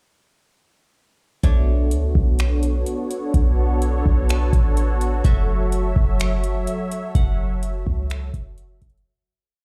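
Atmospheric cloud-rap hip hop at 126 BPM in a half-time 4/4 feel, in B minor, with a spacious, ethereal mood. From 1.4 seconds a booming, tape-warm analog drum machine lays down a sparse beat of deep kick, finger snaps and metallic hats with fast hi-hat rolls, while a clean, sine-toned 808-style bass plays long sub-bass notes with pitch slides that follow the kick. A detuned sawtooth pad with chorus and sidechain pumping sustains Bm9 into F#m7 at 5.2 seconds, and a faint, bright-edged qanun adds a fingerpicked triple-string shimmer throughout before the piece fades out from 7.2 seconds, its dry mix carried on a big sound system through a bare stone room.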